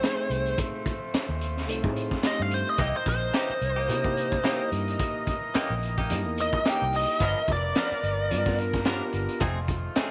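Straight-eighth soul blues with a gritty, rollicking mood, driven by a crunchy breakbeat kit with a high-tuned snare and tight kick sitting up front in a small, pumping room, over a dark, foam-muted fingered bass. A biting, overdriven lead guitar carries the melody, while a mellow tine electric piano accompanies and a horn section with light vibrato and octave doubling holds sustained chords through sharp-nine dominant changes. From 2.8 seconds, a twangy, direct-recorded clean guitar adds compressed stabs bathed in lush chorus, with light small-room reverb around the mix.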